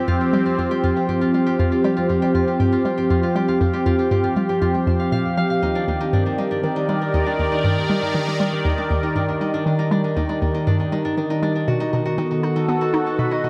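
Drenched in a plate reverb with a long tail, this dreamy mix opens on a brief fragment of ambient, sequencer-driven space music with an expansive, mysterious mood in a straight 4/4. A sweeping resonant pad sits up front, holding sustained chords from detuned sawtooth tones that evolve under a slow-attack filter swell, long release and bright chorus shimmer. Beneath it, a hollow square-wave pluck enters at 0.1 seconds with a bouncy, detuned low riff, its fast attack and short decay edged by a noise layer and treated with chorus and delay. A concert harp threads fingerpicked arpeggios through the middle register, its acoustic strings ringing softly into delay further back in the blend. A filter sweep runs across the synth arpeggio sound throughout, while the harmony drifts from Fsus2 to Ebmaj7 at 5.6 seconds and settles on B7 at 11.7 seconds.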